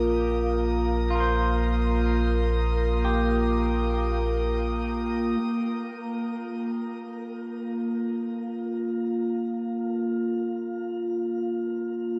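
Floating in free time, this melancholic, spacious ambient excerpt unfolds over a long wash of shimmer reverb with a dark production. A twangy, clean electric guitar plays fingered arpeggios between F4 and C5, set back in the mix and trailed by a diffuse ambient delay until 6.0 seconds. Beneath it, a round sine sub bass holds a deep Bb1 up front, sustained from a fast attack, while a glassy sine texture drifts with calm overtones on a high Eb6, softened by chorus and its own reverb. Both fall away after about 5.4 seconds as the harmony moves from Eb/Bb to Bb5. Only the analog drone carries through to 12.2 seconds, an evolving, warbling vintage blend of sawtooth and pulse waves with pulse-width modulation and chorus, swelling in slowly between Bb3 and F4 and sustaining with a long release.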